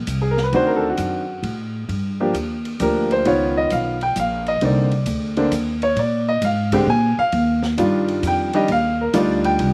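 Sophisticated and swinging, this short jazz piano trio clip in Eb major moves at 132 BPM in a lilting 3/4, with eighth notes swung. The grand piano carries the melody and solos throughout, its smooth, vintage tone with short sustain sitting up front and touched by a slapback echo. Pizzicato upright bass anchors the low end from the very start, sounding woody and thumpy on steel strings, while the drum kit enters at 0.1 seconds with dark cymbals, a medium-tuned snare, hi-hat and a boomy kick, all sitting quietly beneath with a rolled-off top. The harmony travels from a chordless opening through D7b9, Gm7, Db9, Cm9 and Bb13 before settling on Ebmaj9 at 7.3 seconds. The sound is dry and close, with little reverb and an intimate, open-air clarity.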